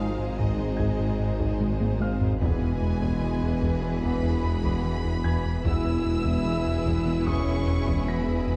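A steady, straight 4/4 pulse at 74 BPM drives this brooding, relentless hybrid orchestral and electronic film cue, cut from a longer piece, with the harmony moving from Ab to E at 2.4 seconds. A focused, lush violin section carries the melody with vibrato, over a smooth, even studio violin line and a viola section in the background, while a soft-attack French horn section, a mellow detuned analog pad and, from 0.8 to 7.6 seconds, a very quiet trombone section hold sustained chords. A tine-like FM synth pluck with chorus adds quiet arpeggios, and a dark concert grand piano with delay lends texture high in the background. The low end is heavy: a round, nasal analog bass riff sits beneath an intense, close cello section, a deep, clean sine sub bass, a distant double bass section and a present tuba. A band-limited taiko ensemble with heavy sticks enters at 0.4 seconds and plays a fill from 1.6 to 2.4 seconds. 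The concert hall reverb and dark production give the whole a shadowy, enveloping weight.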